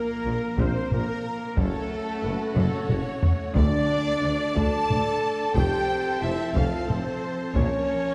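This dark, dramatic orchestral film-score excerpt in a straight 6/8 opens with a lush violin section carrying the vibrato-rich melody, a hollow, very quiet flute section and a smooth second violin section adding a second line, and clear, intense violas in accompaniment, all over sustained chords from a prominent French horn section and a focused string section, punctuated by tight, mellow trumpet stabs. At 0.3 s a distant, very quiet bowed cello section, a clear double bass section and a warm tuba settle into the low register, and at 0.6 s the loudest part, heavy-stick taiko drums recorded in a small room, drives in, taking a fill before soft-mallet timpani strike a close, dry note at 3.6 s. A moderate concert-hall reverb wraps the ensemble in a dark, warm production.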